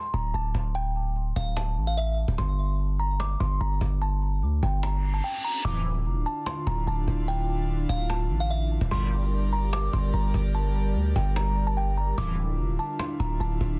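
A half-time trap groove at 147 BPM in D minor drives this dark, hard-hitting hip hop excerpt, with a woody cajon beneath a punchy, heavy 808-style bass sitting up front and a delicate, tinkling FM tine bell melody coloured by chorus, phaser and delay. An electronic reverse cymbal at 5.0 seconds leads into a second section, where an airy, breathy pad with chorus holds chords moving between D minor add9 and G minor, and a juicy, nasal polysynth with a resonant filter sweep lands brief stabs on each chord change. The mix is dense and heavily limited, set in a digital ambience.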